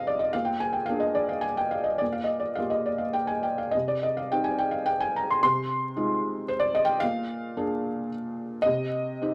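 A felt-muted upright piano plays alone from the start, its soft, mellow tone sitting up front with the audible clicks and thumps of its action. This bittersweet, moody classical miniature sways in a lyrical three-beat lilt with free rubato, moving through minor-key harmony cut short at 9.3 seconds as part of a longer piece. A moderate studio reverb gives the instrument a natural, intimate space, while a vinyl crackle runs underneath.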